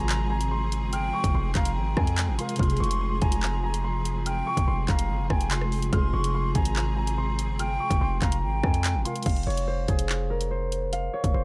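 A saturated, heavy distorted 808 bass anchors this menacing, ominous drill excerpt in F minor at 144 BPM in a half-time feel, joined by an electronic drill kit with a hard-clipped kick, bright hats, handclaps and rim clicks, a ringing thumb-plucked harp melody through a low-pass filter, an airy flute second line with tape echo, a mellow tine electric piano with phaser, and biting, lush bowed strings, until the flute, strings and keys stop at about 9.3 seconds and leave the harp, bass and drums in a short closing section.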